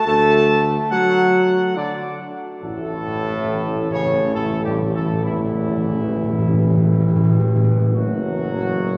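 Solemn and majestic, this classical ceremonial fanfare in a stately triple metre opens with a dark, distant trumpet section carrying the melody over sustained chords from a clear, present trombone section and a French horn section set in the background, both with light vibrato. A warm, roomy solo tuba holds the bass, while timpani played with medium mallets sit up front for a fill from 2.6 to 7.9 seconds. A long cathedral reverb surrounds the brass, and the passage is cut from a longer piece.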